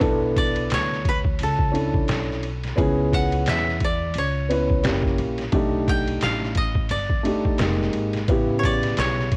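Smoky and nocturnal, this short jazz-hop cut from a longer hip hop piece moves with a swung sixteenth-note lilt in 4/4. A koto carries the melody from start to finish, its dry, fingerpicked tone adding a plucked, woody edge, and it shares a cassette-tape coloring with the piano. Beneath it, a dark grand piano sits up front with mellow, boxy chords that stop at 9.3 seconds, just before the other parts. A pizzicato upright bass with steel strings anchors the low end with a thumpy, acoustic body. The sampler-style drum kit, also up front, sounds compressed, gritty and pitched down, with a thumpy kick, medium-tuned snare, hi-hat and ride cymbal. Light reverb and studio ambience give the home cassette recording an intimate feel as the harmony drifts through Bm11, F#7b9, B7alt and Fm11 before landing on A9.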